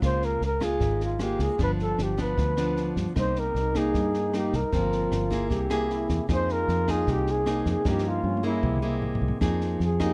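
A fingerpicked, bright nylon-string guitar, round foam-muted electric bass and a compact cocktail drum kit with a high-tuned snare and punchy kick open this smooth, intimate bossa nova excerpt, joined at once by an up-front, breathy flugelhorn melody with scooped notes and vibrato, while a dark trombone adds a background second line from 3.2 to 9.2 seconds and a drum fill arrives at 7.9 seconds, all in a dry, close 1970s-style studio sound with lossy compression artefacts.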